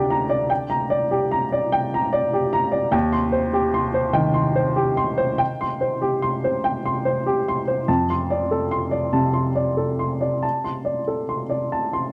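In a 6/8 played with free rubato, this short fragment of neoclassical minimalist piano drifts by in an intimate, wistful mood. A lone upright piano, woody and slightly detuned with a short sustain, sits up front and spans a range from deep bass to bright upper notes, moving through Bb6/D, Cm/Eb and F6 harmonies. Light reverb and a dark production frame the 12.1-second passage, which is cut from a longer piece.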